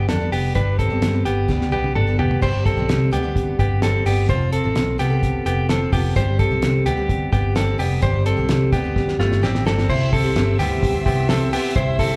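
A clean, direct-recorded electric guitar sits up front with compressed, scooped arpeggios, giving this youthful, breezy stretch of jangly indie pop its warm jangle. Beneath it, a vintage foam-muted electric bass plays round, dark, amped notes close to the listener, while a jumbo twelve-string acoustic guitar shimmers in the background with octave-doubled, full-bodied picking and the odd finger squeak; both guitars carry a slapback echo. The cloth-damped drum kit is dry and thuddy, with a fat snare, tight kick, dark cymbals, toms and a rolled-off top, and it plays fills at 1.5 and 9.0 seconds. The harmony moves from G through Gsus4 and F before landing on C, where a lush studio string section enters at 9.9 seconds with bowed, expressive ensemble chords full of vibrato and portamento, tucked behind the band. The whole performance is heard as a live gig through the venue's PA, wrapped in small-room club reverb, and it is cut from a longer piece.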